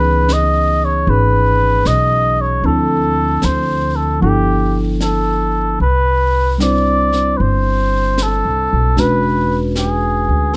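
A dark production with light reverb frames this romantic, intimate jazz ballad excerpt, which swings gently at 76 BPM in 4/4 over chords moving from C#m9 through G13 and Cmaj7 to E13. Up front, a cup-muted trumpet carries the melody with a soft, veiled tone, light vibrato and scooped notes, while a woody pizzicato upright bass with steel strings sits equally close. A clean tine electric piano played through a combo amp fills in the harmony, and an airy brush kit with a high-tuned snare and hi-hat enters at 0.3 seconds.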